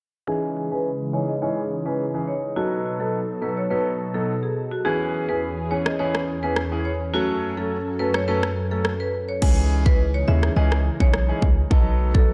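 Soaked in plate reverb, this dreamy, hypnotic dancehall excerpt moves at 105 BPM in C# minor with a tough edge underneath its haze. From 0.3 seconds a hard-mallet marimba carries the melody with a percussive, boxy tone softened by a low-pass filter and delay, while a clear concert grand piano supplies accompaniment, its intimate action noise and long sustain colored by subtle chorus, sidechain pumping and filtering. Just after, a lush unison pad of detuned sawtooth and square waves holds sustained chords with a slow attack, shimmering through chorus and phaser and pumping against the beat. A filter sweep runs through the opening stretch as the chords cycle through C#madd9, B7, E6 and F#m, and a punchy, layered electronic pop kit arrives up front at 5.9 seconds with kick, rim click and crash. At 9.4 seconds a hard-hitting 808-style bass lands, heavy and sine-based with a noise layer and fast, decaying attacks, anchoring the closing section beneath the repeated C#madd9 and B7 chords.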